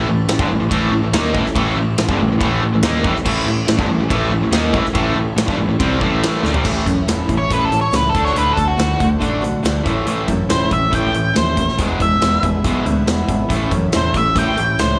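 Driving and confident, this classic rock excerpt moves at a straight four-to-the-bar pulse with a stack of bright, overdriven electric guitar riffs sitting in the background: a cranked stack guitar, a crunchy guitar touched with spring reverb, and a double-tracked distorted guitar that drops out at 6.7 seconds. A growling, overdriven picked bass anchors the low end, while a big acoustic drum kit sits up front with a punchy kick, medium-tuned snare, toms, hi-hat, ride and bright crash cymbals, rolling into a fill at 6.5 seconds. Beneath it all, a very quiet vintage string machine holds soft, sawtooth viola chords with an ensemble chorus and long release. At 6.6 seconds a shimmering, octave-doubled twelve-string acoustic guitar begins picking in the background, and at 7.4 seconds a dark, fuzzy octave-fuzz lead guitar takes an up-front solo with distortion and digital delay. The harmony shifts from A through D and back to A before pushing to E and resolving home, all set in a light, small-room ambience.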